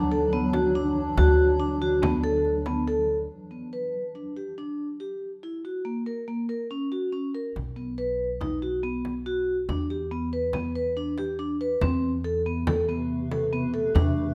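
Contemporary instrumental chamber music in 5/4 at 141 BPM, restless and pensive, built around an up-front vibraphone played with soft mallets, motor off, whose mellow, ringing arpeggios run through the whole 14-second excerpt. A blurred, slowly evolving granular cloud pad with its own reverb holds sustained chords at the opening and returns at 12.9 seconds, while a woody pizzicato upright bass and a deep, close, dry frame drum struck with hard hands drop out after the opening and re-enter together at 7.6 seconds. The harmony moves from Dadd9 through Bm, F#, B5 and Em7 to Amadd9 in a lightly reverberant space, and the piece is cut from a longer work.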